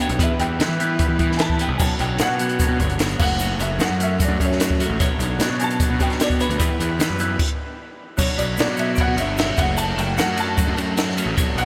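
A compact cocktail drum kit drives a straight, upbeat 4/4 groove with a punchy kick, a high-tuned snare and dark, dry cymbals sitting up front, while a growly, punchy fuzz-overdriven picked bass sits up front alongside it. This jangly indie rock excerpt, cut from a longer piece, sets a featured melody on a dark, woody upright piano with short sustain, colored by analog chorus and tape echo. Beneath it, a twangy, clean, compressed electric guitar riff shimmers through a phaser, and a slightly broken-up guitar through a small old amp plays its own riff in the background with subtle chorus and tape echo. A lush vintage string machine holds soft, sawtooth ensemble chords very quietly until the band hits a stop at 7.4 seconds, and a grainy, distant egg shaker ticks along from 1.8 seconds. After the stop, a bell-like glockenspiel played with soft plastic mallets enters at 8.2 seconds with a very quiet, ringing second line, all of it floating in a huge, dreamy reverb wash.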